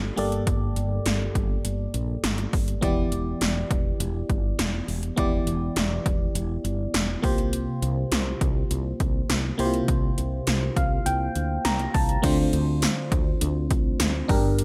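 A digital ambience frames this urgent, dramatic excerpt of 1980s-style pop in D minor at 102 BPM, where up-front, overdriven electronic pad drums enter at 0.2 seconds with a punchy kick, a gated snare drenched in gated reverb, metallic hi-hats, crash cymbal and tambourine. A glassy, bell-like FM electric piano with a warbling chorus carries the chords from Gmadd9 through Em7 and C7sus4, playing a fill from 10.5 seconds before the shift to Dm7 at 12.2 seconds. Beneath it, a woody, growly fretless electric bass holds the low end.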